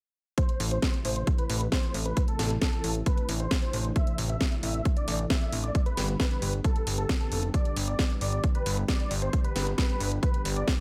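A straight 4/4 pulse at 134 BPM drives this soaring, driving uplifting trance excerpt in A minor, built on a punchy, overdriven electronic kick up front, a house drum kit with a cracking snare and hi-hats that pump to the sidechain, and a plucky, funky analog bass of sawtooth and square waves with ring modulation, while a lush, thick unison pad with chorus sits in the background under a filter sweep and a huge, euphoric, detuned supersaw lead carries the melody through low-pass filtering and digital delay, all in a fairly dry mix as the chords move from Am to G at 5.8 seconds.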